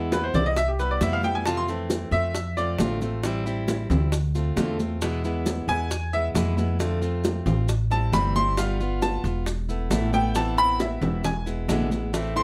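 Nostalgic and danceable, this Cuban son and guajira excerpt moves at 135 BPM in a straight 4/4, with a bright, brilliant baby grand piano up front playing short-sustained arpeggios that carry the solo, pausing at 2.8 seconds and returning at 5.7 seconds. Beneath it, a woody, thumpy upright bass with gut strings plays pizzicato while a dark, boxy, fingerpicked ladder-braced acoustic guitar provides accompaniment. Ringing, high-tuned congas, round, low-tuned bongos played with soft hands and grainy, close maracas fill out the percussion in a light reverb, as the harmony moves from E through Cmaj7, Fmaj7 and Am7 to a closing E7.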